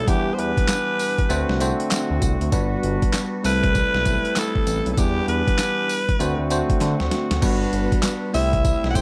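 Swung sixteenths at 98 BPM drive this punchy, bouncy new jack swing R&B excerpt in E minor, where a gritty, overdriven boom bap sampler-style kit with a thumpy kick enters at 0.1 s beneath a smooth, nasal synth bass, a bell-like tine electric piano and a warm woodwind section holding sustained chords, while a raspy alto saxophone with delay leads up front, barely audible group handclaps appear from 0.7 s, and a drum fill lands at 6.8 s over a repeating Em7–D7–Gmaj7–C6 progression.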